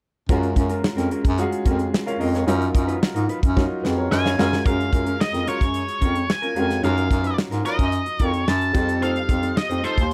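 A straight 4/4 groove from a tight, up-front acoustic drum kit with a medium-tuned snare drives this breezy, urban slice of polished 1980s jazz-funk pop, where a brilliant grand piano with lush chorus plays the accompaniment, a dark, clean, fingered electric guitar riff with subtle chorus sits in the background, and a bright bass clarinet carries the bass line with vibrato and scooped notes; during a drum fill that starts at 3.6 s, a distorted octave-fuzz lead guitar takes the melody from 4.1 s, and a clear, vintage horn section adds a tight second line from 4.7 s, all captured in a dry, close 1970s-style small-room sound.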